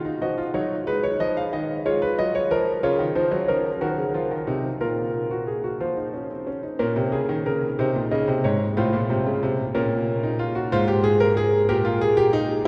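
In a straight 6/8 at 61 BPM, this driving, solemn baroque-style three-part fugue in Bb minor, cut from a longer piece, is carried by a solo concert grand piano with a deep bass, a smooth, vintage tone and short sustain, set up front in a wet cathedral reverb with a long tail, its second section arriving at 6.8 seconds.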